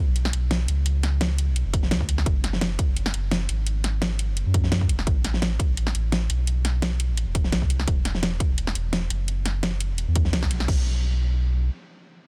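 A deep, sine-toned sub bass with octave, carrying tube saturation, opens this soulful, melancholic liquid drum and bass excerpt at 171 BPM, with a close pop drum kit of fat snare, metallic hi-hats and crash cymbal joining at once and a punchy, layered electronic kick drum entering at 1.7 seconds, all set in a dry, dense, heavily limited mix that holds the drop until a band accent at 10.3 seconds before the drums stop at 10.8 seconds and the bass sustains briefly on its own.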